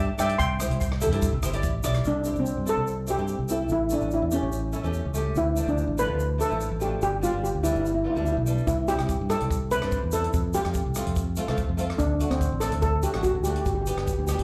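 Calypso with a sunny, festive mood, heard as a live club performance through the venue's sound system with a light reverb, cut from a longer piece. A steel pan carries the melody up front, its shimmering, mellow tone struck with soft rubber sticks and trailed by slapback echo and digital delay. Beneath it, a double-tracked flamenco guitar fingerpicks a dark acoustic accompaniment with audible finger squeaks, also touched with slapback echo. A bright, growly fingered electric bass sits up front with a direct sound, and a grainy egg shaker runs from 0.2 seconds to the end. The chords move through C, A, Dm and G. A compact cocktail kit of hi-hat, rim click and punchy kick plays dry from 0.2 to 2.0 seconds, drops out, and returns at 8.7 seconds on a return to C, carrying on through Fadd9, D and G.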